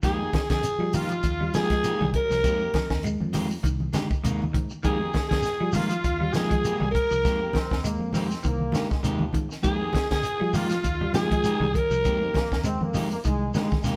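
A breathy, raspy alto saxophone carries the melody up front in this hypnotic, funky afrobeat excerpt, with scooped notes and vibrato, while a brilliant trumpet plays a second line. A dry cocktail kit with a punchy kick and high-tuned snare drives the groove alongside a round, dark fingered bass, a grainy shekere and soft-handed congas in the background, over a single Fm11 chord. A clean picked electric guitar plays arpeggios, a slightly broken-up guitar adds stabs, and a close-miked trombone section joins the second line at 7.5 seconds, the whole band sounding live in a stone room.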